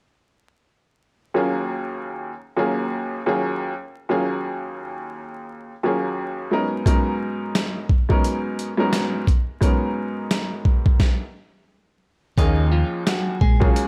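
Boom-bap hip-hop at 87 BPM in Eb minor, with a moody, gritty feel and a swung sixteenth-note pulse, drawn from a longer piece. A woody upright piano opens at 1.3 seconds, sitting up front with short sustain and a cassette-tape tint, moving from Ebm11 to Abm11. A compressed, sampler-style drum kit arrives at 6.9 seconds with a thumpy kick, a medium-tuned snare and hi-hat, sounding gritty and close yet re-recorded in a large room. After a stop from 11.0 to 12.4 seconds, the music returns to Ebm11 as a round, dark fingered electric bass and a clean, picked electric guitar carrying the melody both enter. Vinyl crackle runs underneath, and the overall sound is dry with little reverb.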